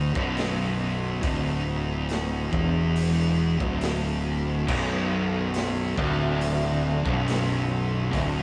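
Stoner and doom metal with a heavy, ominous mood, cut from a longer piece: a dark fuzz guitar sits up front while a second, warmer fuzz guitar lurks in the background over a growly, punchy fingered bass and a raw garage drum kit whose gritty, pumping small-room sound carries crash, hi-hat, kick and snare, until a double-tracked, compressed overdriven guitar joins the riff at 4.7 seconds, all captured as a rough rehearsal-room recording with light reverb.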